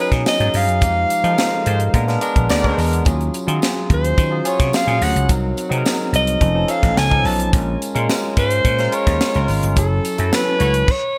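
Polished 1980s jazz-funk pop at 107 BPM in a straight 4/4, this breezy, upbeat passage from a longer piece is tuned to A4 = 436 Hz. A breathy alto saxophone with vibrato carries the melody up front, while a barky tine electric piano, lightly overdriven and coloured by analog chorus through a combo amp, supplies the accompaniment. Growly, punchy slap bass and a tight, dry funk kit with gated reverb anchor the groove, and a jingly tambourine sits in the background. A mellow, distant horn section adds a second line from 1.7 seconds, and the band hits accents together before a stop at 10.9 seconds. The harmony moves through extended chords such as Fm9, Bb7b9 and Ebm11, set in a bright digital production with light studio reverb.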